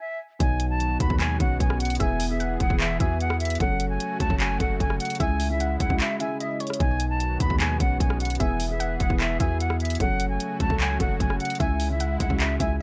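An airy silver flute with vibrato opens alone before a half-time trap beat at 150 BPM arrives at 0.4 seconds, its hard-clipped kick, bright hats, handclaps and rim clicks sitting up front over a deep, mellow sine 808 bass, a dark, boxy grand piano and a smooth, warbling vintage pad with chorus, while a crystalline wavetable pluck with delay joins in the background at 2.0 seconds, giving this dry, triumphant yet dreamy hip hop cut in E major a brief break at 6.0 seconds.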